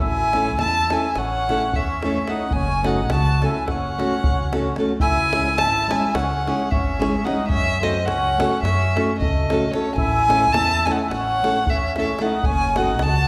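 A dark, intimate violin played sul tasto with light vibrato leads up front over a reedy, mellow accordion, a woody, thumpy pizzicato upright bass and a tight davul sitting dry in the background, joined at 0.3 s by a bright, fingerpicked nylon-string guitar with audible finger squeak, in this virtuosic, restless Balkan wedding-band fragment in 9/8 at 218 BPM (eighths) in F# minor, cycling through A, F#m and C#m chords inside a wet recital-hall reverb.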